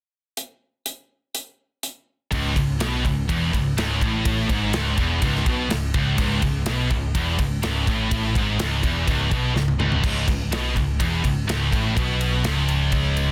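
Heavy metal with a dark, relentless mood, cut from a longer piece and moving in a straight 4/4. A modern acoustic drum kit opens alone at 0.4 seconds, its medium-tuned snare and tight kick sitting up front in a small room, with crash, ride, hi-hat and toms filling out the kit. At 2.3 seconds two scooped, high-gain electric guitars come in together on a low riff centred on C# minor, their tone bright and distorted, while a thick, double-tracked fuzz guitar adds a warm, distorted layer in the background. An overdriven picked bass fills the low end with a bright, growly, punchy bite. A short drum fill at 9.6 seconds breaks up the riff before it carries on, all of it wrapped in light reverb and a dense, heavily limited modern master.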